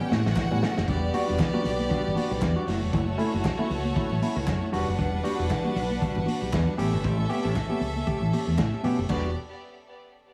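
Disco at 117 BPM in E dorian, this danceable, glamorous clip opens with a drum fill before settling into a swung groove of Em9, F#m7 and A7, carried by a muffled, lo-fi vintage kit and a warm fingered electric bass that sits forward in the mix. A barky, lightly overdriven tine electric piano and a dark, clean electric guitar in the background fill out the accompaniment, while a biting, intense violin section with light vibrato and tape echo plays a second line. Bright, high-tuned congas and hollow group handclaps, the latter entering at 0.4 seconds, add very quiet percussion inside a small-room ambience.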